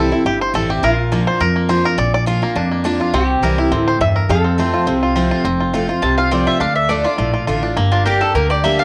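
A home cassette recording in a moderate studio room, this fragment of a fast bluegrass tune in F major runs at 208 BPM with a light swing and a virtuosic, driving mood. A twangy, percussive five-string banjo leads up front with a fingerpicked solo over full-bodied dreadnought guitar picking and a woody pizzicato upright bass, while a nasal, metallic lap resonator slide guitar with plate reverb adds a second line until 5.3 seconds. At 6.0 seconds a bright, double-strung mandolin with analog delay joins the banjo on the melody as the chords move through Dm and Gm.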